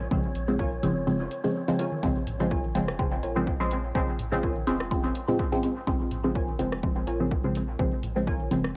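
A muted, detuned sawtooth chord stab sits up front, its Bbm7 voicing colored by phaser and dub echo, with a filter sweep from 2.0 seconds onward. This hypnotic, meditative dub techno cut from a longer piece moves at 125 BPM in 4/4 with a 55% swing on the sixteenths, in Bb minor and tuned to A4 = 436 Hz. Beneath it, a deep, round sub bass adds transformer saturation, while a punchy electronic kick drops out between 1.1 and 2.0 seconds. An analog drum machine supplies hi-hat and rim click, electronic toms sit in the background with their own echo, and a warbling, lo-fi pluck riff drifts behind with subtle chorus. An airy, breathy wind-like texture opens the piece and ends at 2.0 seconds, and sidechain pumping breathes through the bass, stab, pluck, toms and texture, all captured as a cassette home recording with light reverb.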